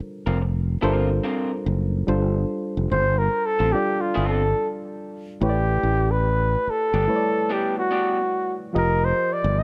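A breathy, whispered flugelhorn with vibrato and a soft attack enters up front at 2.9 s to carry an intimate solo in this soulful, smooth R&B excerpt at 72 BPM with a swung sixteenth feel, over a reedy, bright electric piano, a direct, up-front fretless electric bass, and a dark, slightly broken-up lo-fi electric guitar from a small old amp that plays a second line from 0.3 s to 8.2 s, all set in light digital reverb as suspended ninth chords shift from G9sus4 to A9sus4 and F9sus4.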